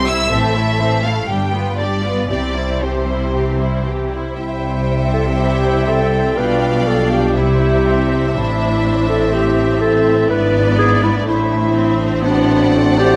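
Lush, bowed violin sections with vibrato carry a smooth melody and a soft-attacked second line in this spirited, lively classical excerpt in C major at 122 BPM with a rubato feel. Beneath them an up-front double bass section and a background cello section anchor the bass, while an intense viola section fills the middle. At 4.4 s a distant, roomy solo clarinet adds a mellow second line and a tight, punchy French horn section sustains chords in the background until the excerpt breaks off at 13.2 s, all set in a moderate scoring-stage reverb.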